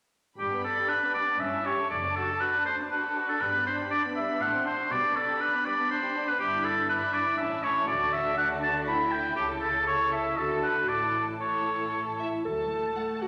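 A roomy scoring-stage reverb surrounds this lively, graceful excerpt from a quick classical-period movement for symphony orchestra, moving at 120 BPM in a straight 3/4 and turning from G major toward D major at 6.4 s. Muted chamber strings, played con sordino with vibrato, carry a dark, veiled tone throughout: the first violins hold the melody, sitting in the background, while a second violin section adds a distant second line. Violas supply close, soft-edged accompaniment, and cellos and double basses anchor the bass, the cellos set back in the mix and the basses smooth on top. Standing clearly in front of the hushed strings is a clear oboe with light vibrato, weaving a second line until about 12.1 s. At 12.2 s a mellow clarinet briefly takes over that role as the phrase settles on a D chord at 12.5 s.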